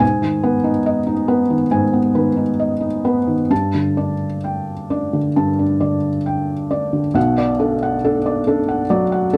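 Reflective and intimate, this brief fragment of neoclassical minimalist piano features a solo felt-muted upright, tuned to A4 = 439 Hz, playing freely in rubato 4/4 from B1 to A5, its soft, mellow tone sitting up front with audible action noise in a dry, close 1970s-style small room as the harmony moves from G#m to Gsus2 at 3.5 seconds and settles on Bm7 at 7.2 seconds.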